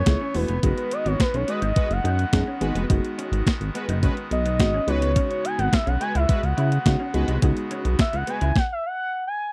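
Early-eighties boogie funk, danceable and dry, in which a smooth, gliding portamento lead with vibrato carries the melody over a thumpy, overdriven 8-bit drum machine, a glossy chorused pulse-wave synth bass, soft round FM electric piano, a slightly broken-up picked electric guitar riff in the background, sustained chords from a bright pipe organ trumpet stop with audible chiff, and a fat, warbling analog synth brass second line that enters at 1.5 seconds.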